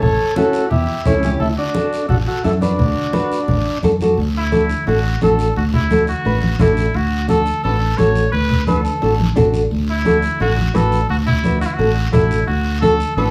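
A reedy, vintage combo organ opens this joyful, sunny cumbia in D major at 173 BPM, carrying the melody up front over a clear trumpet second line, while the harmony moves from A7 to D. Beneath them, a fingered electric bass sits round and up front, and a small nylon-string guitar fingerpicks the accompaniment on fresh strings, its finger squeak audible. Low-tuned congas with a thick skin are played with soft hands in the background, and a raspy guiro stays close and dry far down in the mix. The organ stops at 3.8 seconds, and from 4.2 seconds the trumpet takes a punchy, pop-style solo with light vibrato that runs to the end at 13.3 seconds. A moderate studio reverb and a small room give the cut-from-a-longer-piece excerpt a compact, lively space.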